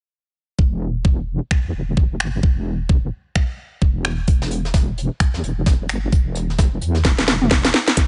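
A heavy, saturated, sidechain-pumped wobble bass in E minor plays alongside a knocking electronic kick from 0.6 seconds in this swaggering, gritty bass house excerpt at 130 BPM with a swung 16th-note feel, joined at 1.5 seconds by a garage kit of finger snaps, cracking snare, metallic hats and toms, and at 4.3 seconds by a dark, brushed acoustic kit of hi-hat and snare, set in a small room ambience and capped by a closing drum fill.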